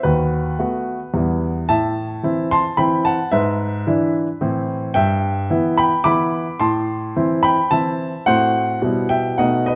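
In a straight 3/4 at 109 BPM, this classical-period piano sonatina moves with a graceful, playful lilt in E minor. A solo baby grand piano carries the entire passage from 0.0 to 9.8 seconds, spanning D#2 up to D6. Its tone is polished and present, with short sustain, and it sits up front in a dark, warm production. A moderate recital hall reverb, about 1.4 seconds long, gives the instrument a sense of space. The harmony opens on B7/D# before settling on Em, then passes through Am, E7/G#, Em/G and F#dim/A, arriving on Em/B near 8.8 seconds as the fragment, cut from a longer piece, breaks off.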